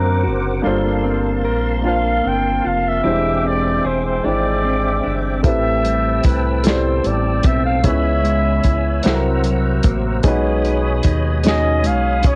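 Late-night and yearning, this slow six-eight R&B passage at 50 BPM is cut from a longer piece and carries a soft-edged flugelhorn melody with scooped notes in a vintage jazz style, set over a dark, mellow concert grand piano, a clean, compressed electric guitar line in the background, and a round, deep analog bass sitting up front. A clear tonewheel organ holds sustained chords with key click, chorus vibrato and a slow rotary speaker, while a dry, muffled soul drum kit of hi-hat, tight kick and medium-tuned snare joins at 5.4 seconds. Light reverb and the lo-fi cassette character of a home recording give the track its worn, intimate feel, as the harmony drifts through chords such as Gm11, E7alt and C7#11.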